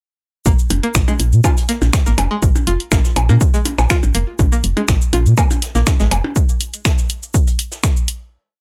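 A dry, gritty hardware recording with little reverb frames this short, quirky and cool piece of minimal techno, which runs as a single drop from 0.5 seconds. A punchy, tape-warm electronic kick sits up front in a steady four-on-the-floor pulse, while an analog drum machine supplies programmed closed hats, cabasa and finger snaps on the backbeat. Underneath, a woody, round FM bass rolls through a dark staccato groove with sidechain pumping, and a very quiet jazz brush kit adds a looped, edited breakbeat of hi-hat, shaker and snare from a natural studio room. A bright, twangy, string-like resonator pluck with a noise layer and filter sweep repeats a 10-step sequence that drifts against the bar, colored by chorus, tape echo and its own pumping. Percussion blips of high conga and cowbell click in cross rhythm, sounding re-recorded in a small room, and the bass, pluck and blips drop away near 6 seconds while the drums carry on to the close at about 8.2 seconds.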